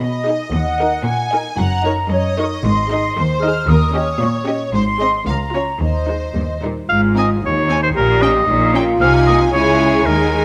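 Airy flutes, lush studio violins and bright, intense cellos open this playful, whimsical film cue in Ab major at 113 BPM in 2/4. They are soon joined by a chamber violin section carrying the melody, smooth-topped violas and focused double basses, all bowed with vibrato in a moderate scoring-stage reverb for a magical, mischievous mood. The flutes stop at 6.6 seconds, and at 6.9 seconds a clear, up-front solo oboe with light vibrato takes a second line over sustained warm French horn chords as the harmony moves through Ab and Eb7 before ending on Dbm in this excerpt.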